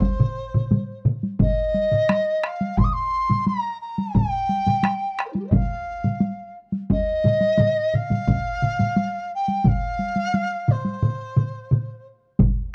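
This short cut from a longer piece has the dry, close sound of a small 1970s-style studio room. It is Japanese traditional music for a taiko drum ensemble, driving and ceremonial, moving at 87 BPM in a straight 4/4 in F suspended pentatonic. A mellow large dizi carries the melody from Eb4 to Eb6, its bamboo tone airy with a buzzing membrane, tongued notes and vibrato, placed up front yet with a distant quality. Beneath it, three solo taiko parts and a taiko ensemble play throughout. Two solo drums struck with heavy sticks sit close, one of them notably dry, while a third, played with hard sticks, is compressed and saturated in the background, and the ensemble's hard sticks also sound close. A break arrives at 11.0 seconds, and the dizi falls silent at 12.1 seconds as the drums carry on to the end.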